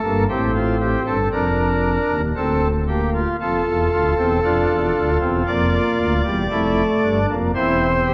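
Elegant and lively, this brief cut from a longer baroque-style four-part fugue in B-flat major moves at 58 BPM in 4/4, with a solo pipe organ on a nasal cornet stop with romantic voicing and tremulant sitting up front across 8.1 seconds, its chords passing from F through B-flat, back to F and on to G minor seventh before settling on C over E, all set in the generous reverb of a scoring stage and colored by the warbling pitch drift of worn cassette tape.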